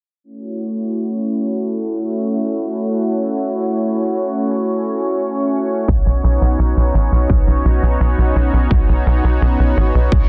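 A straight 4/4 pulse at 85 BPM drives this nostalgic synthwave excerpt in F# dorian, opening with a shimmering, detuned pulse-width pad that holds a sustained F#m7 chord under sidechain pumping and a filter sweep. At 5.9 s the harmony moves to Badd9 as a punchy layered electronic kick and a tight sawtooth-and-square sequencer bass with a plucky filter enter up front. A brief reverse cymbal arrives at 10.2 s in a dry, dense, heavily limited mix.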